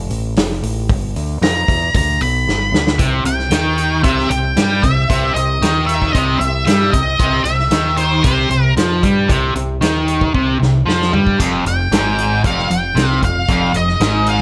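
Lightly reverberant and natural, as if in a studio room, this gritty, swaggering slice of blues rock and southern rock opens on a growling, punchy fingered bass with a driven edge and a vintage drum kit with a punchy kick, medium-tuned snare and dark cymbals. A dark octave-fuzz lead guitar, treated with wah, distortion and plate reverb, sits up front from 1.4 s for a short solo. After a drum fill, a double-tracked, overdriven picked guitar takes up the riff at 3.0 s, and a second fill arrives at 10.3 s in the straight power-trio groove.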